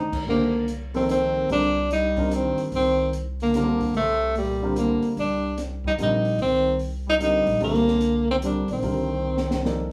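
Spiritual and searching, this short cut from a longer modal jazz piece swings in 3/4 at 147 BPM around a Cm9 chord in C dorian, with a clear, up-front tenor saxophone singing the melody with vibrato and subtone, a buzzy, thin metal-muted trombone tracing a second line in the background, a mellow baby grand piano comping with audible action noise, woody pizzicato upright bass, and an acoustic drum kit of dark cymbals, high-tuned snare and boomy kick that plays a fill at 9.2 seconds, all captured as a band playing live in one small, reverberant room.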